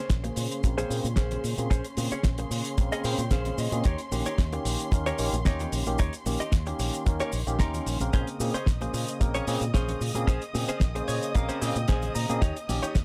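Nu-disco with a groovy, sleek feel, this excerpt rides a dry, up-front kick and a damped 70s kit of fat snare, hi-hat and cabasa, while a punchy fingered bass with an envelope filter and very quiet, ringing maracas and congas fill out the groove in a small room. A barky tine electric piano carries a filter sweep, sidechain pumping and tape echo across the Bbm9 to Eb7 changes, and dark, bowed chamber strings hold sustained chords that also pump. A clean, compressed electric guitar plays a riff through lush chorus, 12-bit sampler grit and tape echo, adding fills at 2.8 and 10.8 seconds.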